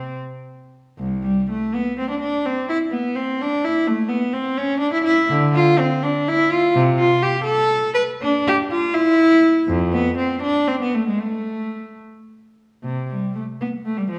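Classical, a baroque-style suite movement for unaccompanied cello, heard as an excerpt cut from a longer piece, grave and introspective in a compound metre with a flexible, rubato feel. A single bowed cello in period style carries everything from 0.0 to 14.2 seconds, its gut-string tone rich and reedy as it ranges from deep low notes up into its upper register, with the harmony turning toward the minor at 6.7 seconds. The instrument sits up front yet is heard from further back in a recital hall, whose wet reverb lends the lines a lingering, resonant halo.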